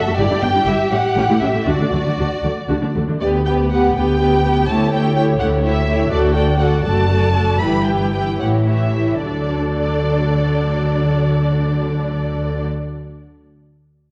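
A quick, cheerful classical-period movement for string orchestra in D major and 6/8, moving with a rubato feel at 68-85 BPM in dotted quarters and slowing down between 5.4 and 9.2 seconds, in a short cut from a longer piece. Two warm violin sections carry the melody and a second line with expressive vibrato and soft attacks, over a rich, distant-sounding viola accompaniment, a smooth, even cello bass and a dark, woody double bass, all bowed and lush. The ensemble sits in a wet scoring-stage reverb, and the sound is colored by worn, warbling old cassette tape with pitch drift.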